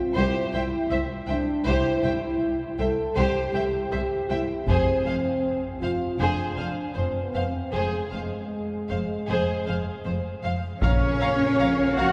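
Epic and dramatic, this cinematic orchestral film-score passage is cut from a longer piece and moves at 79 BPM in a straight 4/4, tuned to A4 = 443 Hz. A mellow, up-front French horn section holds sustained chords from the start. Lush, bowed violins carry the expressive, vibrato-rich melody alongside a second violin line, with a close chamber viola section, cellos and a double bass section sliding with portamento beneath. The harmony moves from C to Fm, where hard-stick taiko drums strike in at 4.7 seconds, and then to Bbm at 10.8 seconds as the texture thickens. There a punchy, brilliant trumpet adds stabs, a smooth-topped trombone section sustains chords in the background, a very quiet, airy silver flute adds a second line, and articulate timpani with hard mallets sound beneath. A long, wet cathedral reverb gives the whole orchestra the sense of a church or concert hall.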